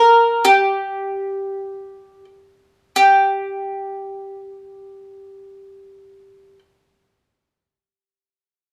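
Fado in free time and G minor, tuned to A4 = 439 Hz, this passionate, mournful fragment of a longer piece features a lone acoustic mandolin, bright and woody with picked double strings, sitting up front and playing between G4 and Bb4 from 0.0 to 6.6 seconds, slowing down through the first 2.9 seconds, while a moderate studio reverb gives the room a sense of distance.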